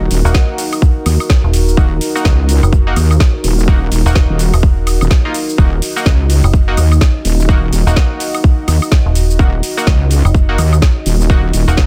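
A heavy, detuned wobble bass sits up front in this swaggering, gritty bass house excerpt in Eb minor at 126 BPM, its saturated sawtooth growl pumping against a tight, tape-warm electronic kick and a metallic FM bass that adds a digital, decaying edge down low. A garage drum kit brings overdriven metallic hats, shaker, woodblock and a woody snare with a 16th-note swing, while a nasal, band-passed chord stab bounces through dub echo above a dark, moody analog pad that holds a single Ebm chord throughout. The mix is dense and heavily limited, with little reverb.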